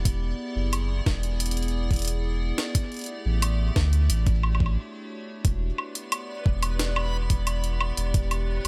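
A gritty, thumpy electronic kick sits up front, compressed and pitched up with a sampler-style bite, driving this melancholic, glitchy IDM excerpt at 89 BPM in a straight 4/4. Beside it, a jungle sampler-style kit adds hi-hat, a medium-tuned snare and woodblock, also pitched up and crunchy, trailed by tape echo. Underneath, a deep, round sine sub bass with a fast attack holds the low end up front. An icy, crystalline glass pad sustains airy chords over E7, A7sus4 and Dmaj7, with chorus, reverb, a noise layer and vintage 12-bit grit giving it a bright, wave-folded shimmer. After a brief stop at 4.8 seconds, the music settles on Em7, and from 6.2 seconds a reversed, detuned granular texture swells dreamily in the background, pumping with sidechain inside a digital ambience.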